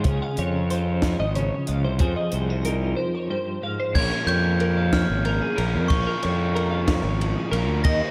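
Two bright, twangy twelve-string electric guitars open this short, restless excerpt of math rock and midwest emo at 62 BPM in a straight 6/8. One picks a tremolo-shimmering accompaniment while the other picks high arpeggios through analog chorus and delay over Dbmaj7 and Fm7. Underneath, a fuzz-drenched fingered bass sits up front, and a compact cocktail drum kit with a high-tuned snare, punchy kick and dark, rolled-off cymbals keeps time. After a break at 3.0 seconds, the accompanying twelve-string drops out and the harmony moves to Bbm7. A raw, double-tracked garage guitar enters in the background with an overdriven riff, and a sparkling glockenspiel struck with hard plastic mallets rings out a bell-like melody through analog delay. The whole mix is dreamy and soaked in a moderate church reverb, giving the intricate parts a hazy, cavernous glow.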